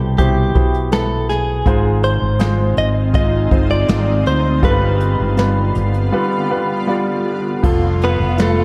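Soaked in plate reverb, this dreamy fragment of a hopeful, emotional pop ballad opens with a clear, present concert grand piano and a round, punchy fretless bass up front, while a clean, direct-recorded electric guitar carries the melody through analog delay over a brushed jazz kit with dark cymbals and a boomy kick. From 2.7 seconds a shimmering, ethereal ambient pad adds sustained chords with chorus and its own bright reverb. After a break at 6.1 seconds, a lush violin section enters at 7.6 seconds as a distant, expressive second line in the background.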